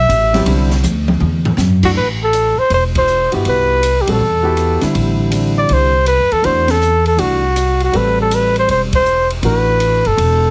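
A mellow, punchy trumpet leads this intense, hypnotic modal jazz passage from a longer piece, its scooped notes and smooth top delivered forcefully up front, with a featured solo across the opening 2.0 seconds. The tune swings at 161 BPM in 4/4 in A dorian, sitting on Am6 before moving to Am69 at 2.0 seconds. A pizzicato upright bass with a woody tone and steel strings stands up front beneath it, while an intimate concert grand piano supplies accompaniment with deep bass, long sustain and audible action noise. The open jazz drum kit, recorded acoustically in a studio room, brings a high-tuned snare and boomy kick, with a fill at 0.8 seconds and several band accents landing later. Light reverb surrounds the group, and a heavily compressed, radio-style sound gives the whole passage a dense, forward presence.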